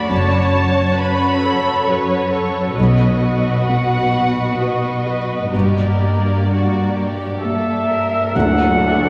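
Muted violins carry a tender, hopeful melody over a veiled second violin line, a felt-muted upright piano with audible action noise, soft violas, lush cellos and very quiet double basses in this rubato cinematic excerpt in 3/4 bathed in cathedral reverb. A bright cymbal swell and tam-tam arrive at 5.5 seconds, an up-front cor anglais and pure flutes join at 7.4 seconds, and horns at 8.3 seconds, with timpani a moment later, add a closing accent.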